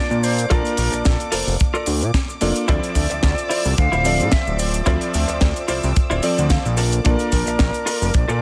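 Sensual and sleek, this short nu-disco passage in D minor moves at 110 BPM in 4/4 with a light sixteenth-note swing, drifting between Bbmaj7 and Dm9 chords in a small-room ambience. A fat, detuned sawtooth analog bass sits up front with a saturated, fast-attack tone, while a dry, polished funk kit supplies cabasa, hi-hat and a high-tuned snare, joined by a tight acoustic kick, both touched with studio reverb. An electric grand piano with a clangy, vintage low end carries the accompaniment, and a smooth symphonic string section holds sustained chords in the background, its bowed ensemble sound pumping against the sidechain. A distant, airy silver concert flute plays the tongued, vibrato-laden melody through tape echo. From 0.5 seconds a clean, picked electric guitar, recorded direct and compressed, adds a riff coloured by lush chorus and 12-bit sampler grit, playing a fill from 6.0 to 7.1 seconds.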